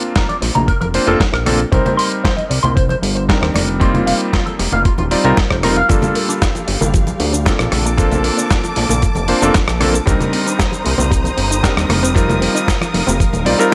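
A bright, twangy electric guitar with an envelope filter leads this groovy, sensual nu-disco excerpt with a riff until 5.9 seconds, when a dark, lush symphonic string section and a round analog pluck playing arpeggios with chorus, tape echo and sidechain pumping take its place. Underneath, a clear, vintage electric grand piano with sidechain pumping and analog delay plays accompaniment over Bbmaj7, Cm7, F7sus4 and Gm7, while a fat, detuned sawtooth bass holds the low end. A dusty, gritty sampler-style kit of hi-hat, rim click, shaker and snare joins a thumpy electronic kick in a small room, with ringing soft-hand congas in the background.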